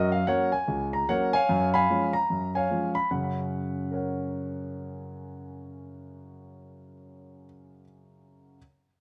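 An intimate, vintage-toned concert grand piano with audible action noise, deep bass and a touch of slapback echo carries this swinging, playful stride jazz excerpt alone from 0.0 to 8.6 seconds at 148 BPM in 4/4 with a 62% eighth-note swing, moving in F# major from F# to C#7/F# at 1.5 seconds and back to F# at 3.1 seconds, all captured up front outdoors with light reverb.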